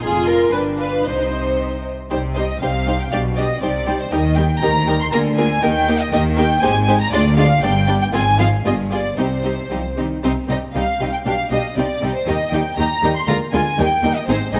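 Quick classical-period string orchestra movement, cheerful and spirited in a straight two-four, cut from a longer piece. A dark, intimate violin section carries the melody up front with light vibrato and a smooth top, while a second violin section floats a pure counterline and a woody, lush viola section with vibrato fills the accompaniment, every section bowed sul tasto. Cellos and double basses share a soft-attacked, warm bass, and moderate concert hall reverb lends the ensemble a spacious bloom.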